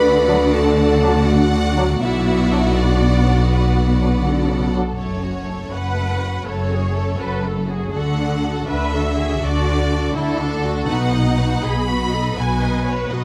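Dramatic and relentless, this cinematic passage in 6/8 is cut from a longer piece and built on a full orchestral string body with brass support. A violin section carries the melody with a focused, vibrato-rich tone, while a second violin section adds an even, smooth second line beneath it. Violas fill out the accompaniment with expressive portamento, and the bass is anchored by an up-front double bass section and a close, soft-attacked cello section. A mellow French horn section holds sustained chords in the background throughout, joined early on by a very quiet trombone section that stops at about 4.8 seconds, while a dark solo tuba plays in the bass register until about 4.7 seconds. The harmony moves from D and B minor into F# minor, then back to D before landing on B, all set in a light reverb that keeps the lush ensemble sound intact.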